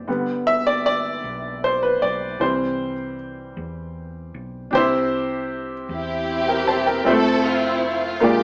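Wet studio reverb and a small speaker sound frame this jubilant, hopeful slow gospel fragment in 6/8 at 52 BPM, where a clear, woody upright piano with audible action noise leads from the start over a round, punchy hollow-body electric bass, moving through G and C before a dark, lush bowed string section with expressive vibrato enters at 5.9 s and carries the melody into a closing Fmaj7.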